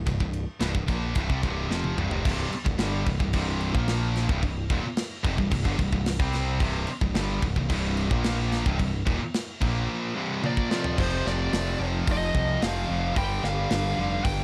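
Aggressive and epic, this heavy metal fragment drives forward at 110 BPM in a straight 4/4, cut from a longer piece. A growling, overdriven electric bass opens the track up front, joined almost at once by a tight acoustic drum kit with bright cymbals, a medium-tuned snare and a tight kick, alongside two high-gain guitars, one heavy and one scooped, both picked and set back in the mix. A drum fill leads into the second section, where a double-tracked, compressed fuzz guitar enters at 2.2 seconds to thicken the riffing as the harmony moves between C and B-flat power chords and C minor. During another fill, at 10.5 seconds, a dark, distorted lead guitar begins picking out a high melody over the wall of rhythm guitars, and the final section then shifts to F and G power chords. The production is dark and warm, with a small room ambience framing the dense, gritty arrangement.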